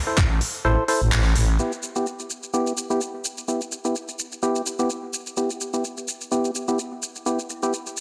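Bass house at 127 BPM in E minor with a 16th-note swing, this gritty, aggressive excerpt is cut from a longer piece and set in a lush hall reverb. A hollow, percussive organ stab with chorus, tape echo and sidechain pumping runs through nearly the whole clip, while a growling, thick FM bass with overdrive and pumping sits up front only from 0.2 to 1.6 seconds under an Am chord before the harmony moves to Em. A crisp, tape-warm garage kit of handclaps, hi-hat and shaker drives throughout, with a band accent landing at 1.1 seconds.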